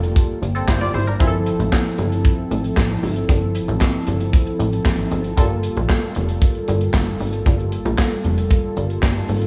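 Recorded with small room ambience, this early-eighties boogie funk excerpt at 115 BPM in G dorian carries a funky, late-night mood, built on a dry, tight funk drum kit of handclaps, hi-hat, kick and medium-tuned snare under gated reverb, an up-front plucky analog bass with a sawtooth, wave-folded filter pluck, and a mellow, detuned polysynth comp with chorus moving between Gm9 and Fmaj7/G, while very quiet, distant congas played with soft hands enter at 0.7 seconds.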